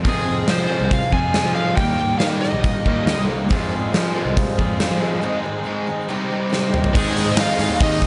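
Gritty and driving, this classic rock excerpt runs at 139 BPM in F minor, with a huge, up-front arena drum kit of bright cymbals and punchy kick, fuzz-laden picked bass, and two overdriven rhythm guitars, one biting and one raw, grinding out riffs with slapback echo beneath a smooth, bright lead guitar melody that enters at 0.1 seconds and returns at 7.0 seconds. Underneath sit a very quiet boxy acoustic archtop with finger squeak and a fat tonewheel organ holding sustained chords through a slow rotary speaker with key click, while a dark slide guitar adds a second line from 3.1 to 5.4 seconds. After a drum fill, the final stretch brings in a scooped, double-tracked overdriven guitar riff, a faint octave-fuzz lead line, and a barely audible, distant group handclap, all in a big arena sound with a lush hall reverb.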